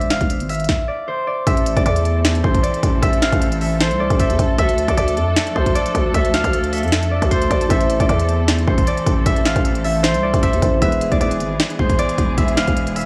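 An echo-heavy mix set in a small room with studio reverb gives this eerie, hard-hitting trap excerpt a close yet haunted sound. At 154 BPM in a half-time feel and A harmonic minor, an up-front trap kit punches with a hard-clipped kick, sharp snare and crisp hats, while a growling, buzzy 808-style bass with a fast attack and decaying tail anchors the low end. A mellow, fingerpicked concert harp carries the ringing melody up front, filtered and trailed by analog delay. A dark baby grand piano sits in the background with short-sustained accompaniment, sounding at the opening and returning from 7.7 s. From 1.5 s a muted, con sordino string section adds veiled, bowed sustained chords with vibrato and a soft attack, as the harmony moves from E through Am and Dm before settling back on E.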